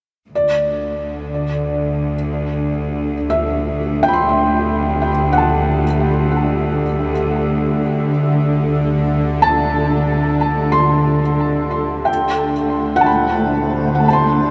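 In free time, this luminous, serene ambient fragment of a longer piece rests on a single D7sus4 chord in D mixolydian, tuned to A4 = 439 Hz: a close, intensely bowed cello section holds a low D2 from 0.3 seconds, a detuned, string-like sawtooth drone with vibrato sustains D3 from 0.7 seconds, and a soft, felt-muted upright piano sits up front with intimate, boxy arpeggios, audible action noise and delay, while a cloudy, blurred granular pad enters at 2.0 seconds with slow-attack chords, all of it bathed in a huge, wet reverb.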